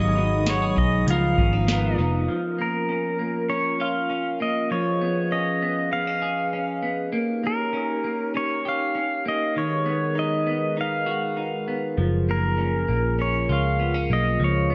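In this dreamy, ethereal dream pop excerpt, a soft vintage rhythm box enters at 0.5 s with a brief straight 4/4 groove of deep kick, crisp snare, metallic hats and tambourine until 1.8 s. Meanwhile a fingerpicked pedal steel guitar carries the melody up front with volume swells and slide through analog delay, a lushly chorused semi-hollow electric guitar spins arpeggios in the background, a second hollow-body guitar adds tremolo-washed accompaniment up front before stopping at 2.8 s, a pure glass harmonica holds slow-attack chords with gentle beating, a round, foam-muted bass sits up front at the start and returns at 12.0 s, and a detuned FM bell glints briefly with phaser, inside a moderate plate reverb and an echo-heavy, dark-topped mix.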